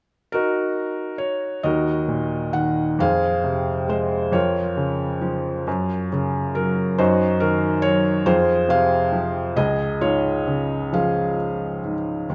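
Classical lyrical solo piano in a dark, melancholic mood, this short cut from a longer piece moves slowly at 45 BPM in 6/8 with uneven, rubato beats in Eb dorian, as a felt-muted upright piano enters at 0.3 s with a soft, intimate, vintage tone sitting up front in moderate concert hall reverb and drifts through Ebm, Fm, Bbm/F and Gb before settling on Db as it stops at 12.3 s.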